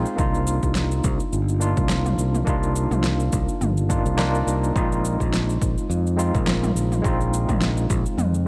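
A dry sunset chillout excerpt with a smooth, swung feel sets a barky, gritty tine electric piano with fast tremolo and tape echo over a growly, up-front fingered electric bass, while an overdriven deep house kit of cabasa, fat snare and toms rides alongside a punchy electronic kick. The chords move from Cm11 to Bb9sus4 at 4.8 seconds, and the kick drops out at 8.2 seconds.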